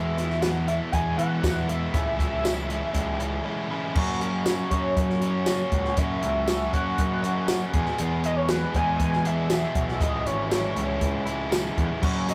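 A rough rehearsal-room recording with tube saturation and a small room's reverb frames this wistful, carefree indie rock excerpt at 119 BPM, where a shimmering, retro pulse-width lead with chorus, vibrato and portamento carries the melody over a bright, double-tracked overdriven electric guitar riff, a growling, punchy picked electric bass with overdrive, and a dry, up-front compact cocktail drum kit with dark cymbals, a high-tuned snare and tambourine that enters at 0.2 seconds, with a break at 3.5 seconds before the harmony moves from E and C#m to F#.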